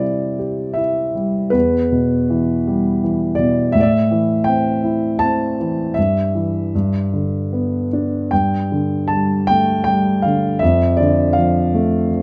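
Classical solo piano in a lyrical, rubato style, this short passage in triple metre feels reflective and melancholic. A single grand piano carries the whole 12.2 seconds alone, its dark, mellow tone sitting up front and close, with the faint sound of its action audible beneath the notes. The playing is smooth and intimate, spanning from the low register up through the upper middle of the keyboard, and the instrument has a vintage character. The harmony drifts from C through E minor and A minor seventh toward G, lingers on a suspended G, and comes to rest on a D minor colour over F. Light reverb and detailed close microphones keep the sound personal, and the passage is cut from a longer piece.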